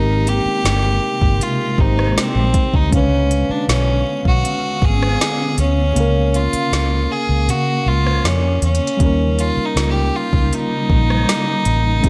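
A rich, earthy fiddle with light vibrato carries the melody up front over muted, felt-like synth keys with chorus, a blurred granular cloud pad in the background and a round, foam-muted fingered electric bass, with a tape-warm R&B drum kit with a soft kick joining at 0.3 seconds. This tender, dreamy contemporary R&B excerpt moves at 79 BPM in a straight 4/4 through Abmaj9, Db7b9, Db6 and Eb7, and the kick drops out for a stretch in the middle. The fiddle carries a delay, and at 9.8 seconds a very quiet, inharmonic FM chime briefly rings, all within a digital ambience.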